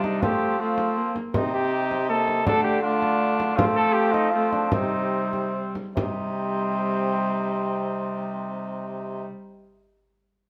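A solemn, rustic renaissance-style consort dance in 3/4 and C dorian opens with all five parts together: a punchy, vintage-toned cornet carries the melody over a soft-attacked, distant cor anglais second line, an up-front, reedy gut-string viola accompaniment, a warm bassoon bass and the bright tone of a small frame drum played with soft hands. The tempo of 141-163 BPM eases back between 3.0 and 6.0 seconds as the chords move through F, Cm and Dm, and the drum stops at 6.2 seconds, leaving the winds and viola to carry the new section to the cut. A moderate stone-room reverb gives the roomy bassoon and mellow winds an echoing depth, with a faint mains hum underneath.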